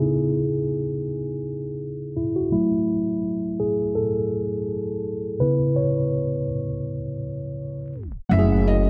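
A worn, slightly out-of-tune tine electric piano carries this melancholic, hazy hip hop passage, cut from a longer piece, playing alone and up front from the start until 8.3 seconds as it moves between C#m7 and F#m7. A filter sweep runs across that solo stretch, and a tape stop arrives at 7.9 seconds. At 8.2 seconds a soft felt-muted upright piano takes up a brief melody in its upper register, its mellow, vintage tone carried on tape echo. An up-front, woody upright bass, plucked pizzicato on steel strings, joins a moment later on a low F#. The groove has a light swing, and the dreamy mix is soaked in a lush hall reverb, with vinyl crackle and a low-pass filter adding to the haze.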